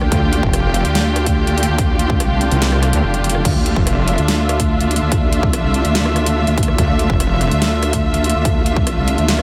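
Menacing and heavy, this half-time wobble dubstep excerpt at 144 BPM in D minor sets a nasal, formant-filtered vowel-sweep wobble bass and a saturated sawtooth wobble bass (heard 0.1-4.2 s and again briefly) under a thick, warbling detuned pad with sidechain pumping, rich bowed symphonic strings, a punchy kick that drops out between 2.6 and 3.5 s, and a drum kit with a huge snare and metallic hats, all over a Dmadd9 chord.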